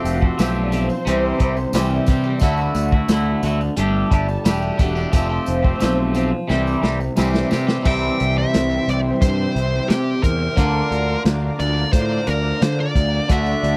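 A straight 4/4 groove from crunchy, saturated breakbeat drums with dark cymbals drives this hypnotic, hazy psychedelic rock excerpt, where a punchy fuzz bass and a twangy, phased guitar riff sit up front over mellow, chorused string-machine cello chords in the background, a jingly tambourine sits faintly behind until 7.8 seconds and returns briefly near the end, and after a drum fill a dark, distorted lead guitar with tape echo takes the melody from 7.9 seconds in a dry, close 1970s-style studio sound.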